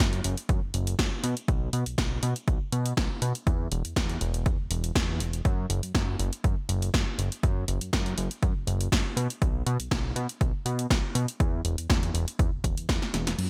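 A lightly swung groove drives this groovy, nostalgic slice of filtered disco house. An overdriven, punchy electronic kick sits up front beside a punchy, overdriven analog drum machine whose snare, hi-hats and crash cymbal carry gated reverb, with the hats and cymbals pumping. Beneath them, a fat, detuned sawtooth bass with a fast attack pumps through a low-pass filter, all within a bright 1980s-style digital mix that closes on a drum fill at 13.0 seconds.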